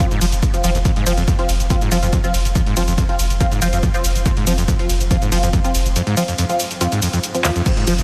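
This driving, dark peak-time techno cut in F minor opens at 141 BPM with a squelchy, gritty acid bass riff (distorted, with analog chorus and delay), muted, detuned dub chord stabs moving through a phaser and ensemble chorus, a punchy, tape-warm electronic kick, and an analog drum machine of handclaps, hi-hats, shaker, ride and crash cymbals. A thick, saturated triangle sub bass joins at 0.2 seconds, and the sub, acid line, stabs and the drum machine's hats, cymbals and percussion all pump against the kick, giving the groove a hypnotic, breathing pull inside light digital ambience. The kick drops out at 6.0 seconds, and a drum fill arrives at 7.4 seconds before the excerpt cuts off.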